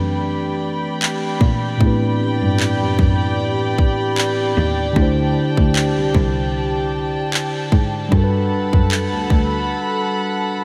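This contemporary R&B excerpt moves at a slow 76 BPM in 4/4 with a light sixteenth-note swing, and its mood is late-night and sensual in A dorian. A mellow tine electric piano sits up front with a clean tone, as if heard through its own built-in speakers. A studio string section holds sustained chords with light vibrato and a reedy, gut-string, period-style colour, and a single bowed cello carries the bass with a rich, focused sound. An electronic trap kit of handclaps and a hard-clipped, tape-tinged kick enters at 1.0 s. The harmony moves from Am11 through D7sus4 to Gmaj9 at 8.1 s, and the cello drops out at 9.7 s for a brief break. The whole mix is soaked in a huge ambient reverb that gives it a dreamy haze.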